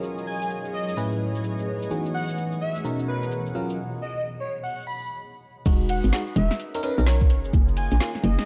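A hollow, punchy FM bass arrives up front at 5.7 seconds, landing with a knocking, overdriven kick as the drop hits in this soulful, bouncy two-step UK garage piece, cut from a longer track. Before that, a glassy FM electric piano plays bell-like stabs through chorus, phaser and tape echo, while a garage kit of woody snare, metallic hats, shaker and crash carries the swung groove with its own overdrive. An airy, dreamy lead sings the melody from 0.3 seconds, soft and detuned with vibrato, colored by chorus, cassette-tape character and tape echo. Underneath, a smooth, warbling analog pad holds sustained major-ninth chords in the background, and a cloudy granular pad drifts and evolves in its own reverb, both pumping with the sidechain. A break begins at 3.8 seconds, and the harmony falls away at 4.7 seconds before the drop. The whole mix sits in a dark, warm production with light digital ambience.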